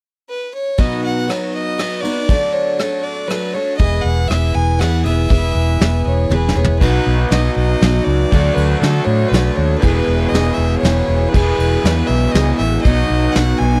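A clear, biting fiddle carries the melody from 0.3 s in this nostalgic, open-road folk rock and heartland rock excerpt in 3/4 at 119 BPM in E major, joined at 0.8 s by a shimmering, octave-doubled picked twelve-string acoustic guitar and a soft brush drum kit with a punchy kick. A round, up-front fingered electric bass arrives at 3.8 s, and after a drum fill a raw, overdriven garage guitar riff enters at 6.8 s with a lo-fi, double-tracked edge, as the chords cycle through B, D and E. The sound is dry and close, with little reverb, in the manner of a 1970s studio recording.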